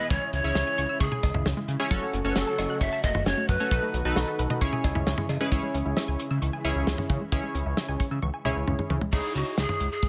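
A straight 4/4 pulse at 133 BPM drives this cool synth-pop fragment in C# minor, where a dry, damped 70s drum kit with dark cymbals sits up front beneath a fat, saturated analog bass, a punchy, warbling polysynth comp with chorus, a silky string machine and a detuned unison pluck playing arpeggios with digital delay in the background, while breathy, reedy pan pipes carry the melody until 4.2 seconds and return at 9.1 seconds, just after a drum fill that begins at 8.2 seconds, as the chords move through C#m, F#m and B7.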